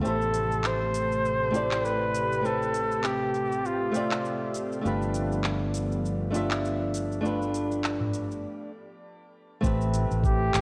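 Wistful sunset chillout with a swung lilt, where an up-front fingerpicked flamenco guitar with fresh strings and finger squeak sits over a soft, breathy pad carrying a filter sweep in the background, a growly fretless electric bass, and a smooth R&B kit of handclaps, metallic hats, shaker and toms, while a veiled, whispered bucket-muted trumpet sings an intimate vibrato melody until 4.5 seconds, and after a break a knocking electronic kick arrives at 9.6 seconds, all bathed in lush hall reverb and the warble of worn cassette tape.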